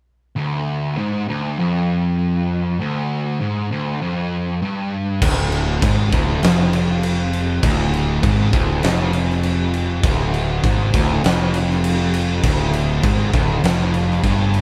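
Brooding and hypnotic, this stoner and doom metal passage, cut from a longer piece, moves at 100 BPM in a straight 4/4 centered on D minor. A distorted, double-tracked fuzz guitar sits up front alone from 0.4 seconds, picking a dark riff, until a round, overdriven fingered electric bass and a big acoustic rock kit with a punchy kick, fat snare and crash cymbal arrive together at 5.2 seconds. The band sounds live in one room, with light reverb, a faint mains hum, and smooth, roomy drums.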